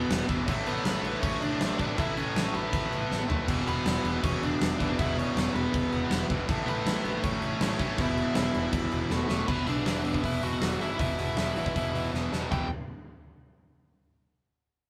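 Opening at once with a bright, double-tracked distorted guitar riff over growly picked bass, an overdriven electric guitar melody and a big, punchy acoustic drum kit that enters at 0.1 seconds and fills at 3.1, 9.1 and 12.1 seconds, this angry, urgent punk rock excerpt drives along at 160 BPM in a straight 4/4, moving between A and E5 chords with the band playing live in one room under light reverb.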